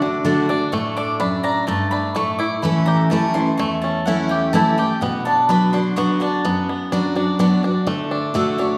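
Bluegrass in a driving, rustic 3/4 at 126 BPM in D major, this short excerpt cut from a longer piece moves through D, A and B minor before returning to D at 7.9 seconds. An up-front, full-bodied picked acoustic guitar carries the accompaniment alongside a twangy, percussive banjo played with fingerpicks rolling out arpeggios. A woody, double-strung mandolin enters at 0.3 seconds with high stabs as the featured solo voice, all set in the lush reverb of a recital hall.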